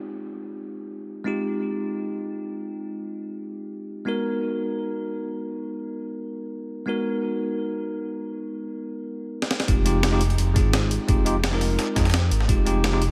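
Liquid drum and bass with a lush, soulful mood, this short cut from a longer piece opens on a bell-like tine electric piano, bright and clean, sitting up front with tape echo as it moves from Fm9 to Abm9. The whole mix is dreamy and soaked in a cathedral reverb, giving the opening a floating, spacious quality. After a break from 8.3 seconds, a gritty, pitched-up breakbeat kit of hi-hat and medium-tuned snare arrives with a drum fill at 9.4 seconds. The drop lands at 9.7 seconds, bringing a deep, rumbling detuned saw bass that is saturated and dark, a thumpy, compressed electronic kick with a tape-warm edge, and a second breakbeat layer in the background with a high-tuned snare and high-pass-filtered hats. Over this heavier foundation the chord returns to Fm9, contrasting the sparkling keys with the beating low end.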